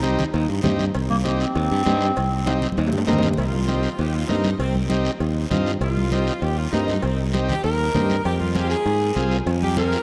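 A straight 4/4 cumbia groove at 197 BPM drives this fiery C minor piece, with a growly fingered electric bass up front, thick-skinned congas in the background, a dry, close guiro and very quiet ringing cowbell and timbales under a buzzy vintage combo organ, while a raspy, growling clarinet solos with scooped notes through the opening three seconds, joined by a drum fill from 2.5 seconds, before a bright saxophone section with a soft attack and light vibrato takes the melody at 3.4 seconds and the harmony shifts from Cm to Fm at 8.2 seconds, all in a vast, echoing cathedral-like space.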